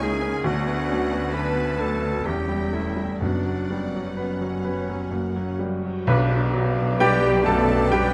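A clear, up-front baby grand piano rings with long sustain inside a moderate scoring-stage reverb, carrying the melody of this brooding, passionate romantic movement for piano and orchestra in B minor, a brief excerpt cut from a longer piece. It moves in a slow, rubato 3/4 at roughly 60-68 BPM, with lush, bowed symphonic violins doubling the melody softly, while a bright solo clarinet and a close studio violin section with portamento trace second lines. Underneath, a distant, woody viola section, very quiet mellow French horns holding chords, and a bass of rich double basses and close, warm cellos support harmonies moving from Bm/D through C#dim/E to F#sus4 and F#. At 3.2 seconds, a very quiet, close and dry cymbal swell and tam-tam join with round, soft-mallet timpani. At 6.1 seconds the music arrives on Bm with an accent: a tight, roomy trumpet section stabs, a vintage-toned trombone section holds a chord briefly, and a mellow cor anglais and a dark, faint bassoon enter, followed by airy flutes at 7.0 seconds.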